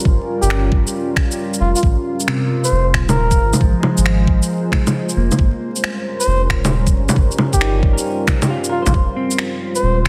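Future garage at 135 BPM in 4/4 with a swung sixteenth-note feel, this short excerpt cut from a longer piece carries a melancholic, rainy mood over chords moving from Gm7b5 through Ab6 and Eb13 to Fm7. A deep, moody pad built from detuned sawtooth and sine layers warbles with chorus and its own reverb, its slow attack and long release giving the harmony a vintage haze, while a dark, clean semi-hollow electric guitar plays fingered accompaniment through a low-pass filter sweep and delay across the full 10.1 seconds. Underneath, a round sine sub bass and a knocking, tape-warm electronic kick anchor the groove, with the guitar, pad and bass all pumping under sidechain compression. Shaker, finger snaps and bongos sit up front from 0.4 seconds, the snare edged with soft clipping. Over this, a close-miked trumpet with a bucket mute takes the solo melody in a veiled, forceful jazz style with vibrato, trailed by dub echo. 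The mix sits in a moderate recital-hall reverb and arrives as a dense, heavily limited modern master dusted with vinyl crackle.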